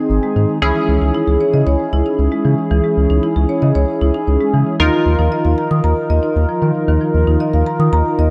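Upbeat yet wistful, this short synth-pop excerpt in a straight four moves through Ab, Dbmadd9 and Ebsus2. A punchy, funky polysynth comp with a sawtooth edge, filter sweep and chorus sits up front beside a deep, round analog bass that enters at 0.1 seconds, while a woody marimba played with soft mallets spins arpeggios through a digital delay. Light reverb and a small-room ambience surround the mix, whose top end is gently rolled off.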